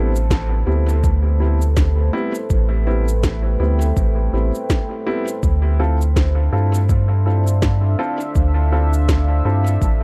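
Ambient dub at 82 BPM in A minor with a swung sixteenth feel, deep and spacious, where a round, mellow sine sub bass sits up front beneath a moody, chorused sawtooth pad with slow attack, long release and built-in reverb, while woody, slightly detuned upright piano stabs carry 12-bit sampler grit and dub echo, a soft overdriven electronic kick enters at 0.3 seconds, and an electronic cabasa with a woody snare, also overdriven and echoed, adds a small-room texture as the chords move from Am9 to Dm9 at 5.4 seconds in this dark, warm fragment of a longer piece.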